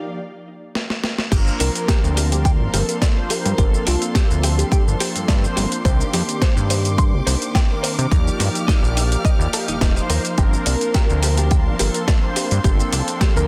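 A gritty, sampler-style soul drum kit opens this sleek, sensual nu-disco excerpt in G minor at 106 BPM with a fill at 0.8 s, and at 1.3 s a punchy, overdriven electronic kick and a fat, detuned sawtooth bass up front drive the drop, while round synth brass with chorus and tape echo and dark, bowed strings hold sustained chords under a filter sweep that opens into the drop. A bright, clean direct guitar riff sits in the background, and a thick, detuned unison lead carries the melody in two passages, the second starting at 10.7 s, across Ebmaj9, Gm11 and Cm9 harmonies in a dense, heavily limited mix.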